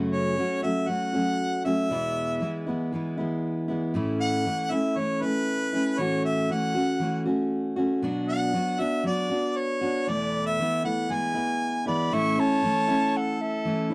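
A harmonica with light vibrato carries a classical-style solo through the first 12.1 seconds of this pastoral, hopeful folk piece in A major at 117 BPM, its tone sounding distant and roomy. Beneath it, a full-bodied, dreadnought steel-string acoustic guitar sits up front, picking an accompaniment through F#m, E, A, Bm and Esus4 in a straight 4/4. An airy alto recorder enters at 11.9 seconds with a tongued, expressive melody marked by a soft chiff, all within a dry, close 1970s-style studio sound touched by light reverb.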